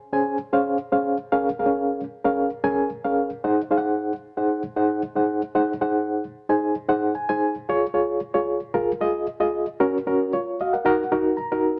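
Uplifting and warm, this short soul excerpt moves at 113 BPM in a straight 4/4 feel, set in Db major with tuning at A4 = 442 Hz. A lone reed electric piano carries the whole performance from 0.1 to 11.8 seconds, sitting up front with a reedy, worn and slightly out-of-tune character heard through its built-in speakers, clean and shimmering with tremolo. The harmony opens on Dbmaj7 and passes through Bbm7 and Ab7 before a second passage begins at 7.7 seconds, moving from Db to Gb and Ebm. The piano adds short fills at the close of each passage, first at 6.6 seconds and again from 10.3 seconds to the end. A light reverb and the feel of a band playing live in one room give the sound an intimate, unpolished presence, and the clip is cut from a longer piece.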